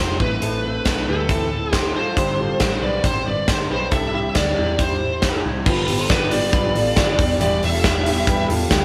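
Youthful and breezy, this jangly indie pop fragment rides a straight 4/4 feel, with a dark, overdriven lead guitar carrying the melody through tape echo while a full-bodied, fingerpicked jumbo acoustic sits in the background and a bright, twangy electric through a small old amp picks slightly broken-up arpeggios. A round, foam-muted fingered bass plays alongside the guitars from the start, and a big acoustic rock kit, up front with a punchy kick and rolled-off top, enters at 0.2 s over chords moving from Amadd9 through Gsus4 and Cadd9 before shifting to G7 at 5.7 s and Em7 at 7.2 s. The band sounds like it is playing live together in one large studio room with moderate reverb, and the lead drops out at 8.5 s just before the cut.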